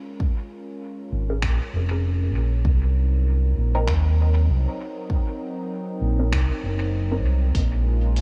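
Dry yet spacious, this deep ambient dub fragment at 98 BPM with a swung 16th-note feel opens on a fading-in, smooth, warbling vintage analog pad with chorus over Bbm7 and Cm7b5 chords, joined at 0.2 seconds by a deep electronic kick, then by a dark, round fingered electric bass up front, muted filtered dub chord stabs in the background carrying phaser, lush chorus, cassette tape and dub echo, and, from 1.4 seconds, a muffled, compressed sampler-style kit of finger snaps and hi-hat with its own dub echo.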